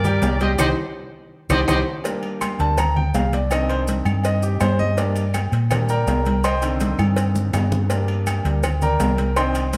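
Heard in a moderately reverberant large studio, this fiery, passionate salsa excerpt opens with a tight, vintage trumpet section singing the melody with vibrato until 1.8 s, during a band accent and a drum fill. From 2.1 s the brilliant, polished baby grand piano takes a solo, up front and intimate with long sustain and audible action noise, while a dark, round, punchy hollow-body electric bass anchors the low end. Ringing metal-shell timbales and agogo bells and grainy, mellow maracas drive the groove, with thin-skinned congas, a high-tuned cowbell and woody claves sitting in the background, and another drum fill arrives at 7.2 s.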